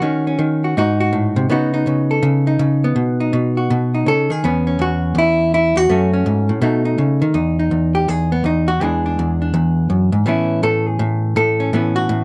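A dark, clean, compressed hollow-body electric jazz guitar sits up front in light reverb and close, detailed sound. It picks through sophisticated, swinging solo jazz changes from D#m7 and G#7b9 toward Emaj7, then moves into a solo passage from 7.3 seconds until this fragment of a longer piece ends at 12.2 seconds.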